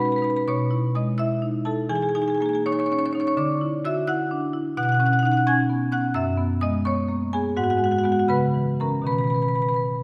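Heard from further back in a room with a wet scoring-stage reverb that lingers for about 1.7 seconds, this short passage from a longer contemporary classical piece for solo marimba sounds spacious and resonant. The marimba itself sits up front in the mix, played with medium hard mallets on rosewood bars that give it a woody, dark and smooth tone with a percussive edge. In 6/8 and B major, the music moves with a flowing, playful rubato at roughly 76-87 dotted-quarter beats per minute, spanning from F#2 up to G#6. The harmony drifts through colourful extended chords, starting on Amaj7/B at 0.5 seconds, passing through Emaj7#11, Dadd9 and F#9sus4, and settling back on Badd9 at 9.1 seconds.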